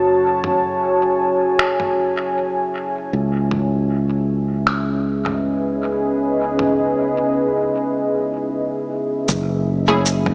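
A dark, moody pad of slow-attack detuned sawtooth chords with chorus and its own reverb opens this spacious ambient dub excerpt at 78 BPM in F# dorian, alongside a growly fingered electric bass and, almost at once, a muffled, pitched-down, overdriven sampler-style kit of cabasa, finger snaps and toms with low-pass filtering and dub echo, moving from F#m7 to C#m7 with a light swing; after a break at 7.8 s, a punchy layered electronic kick enters in the background at 9.3 s and a bright, detuned filtered chord stab with phaser and analog chorus flashes up front at 9.9 s, the mix sitting in a wet echo-chamber reverb with a small-speaker sound.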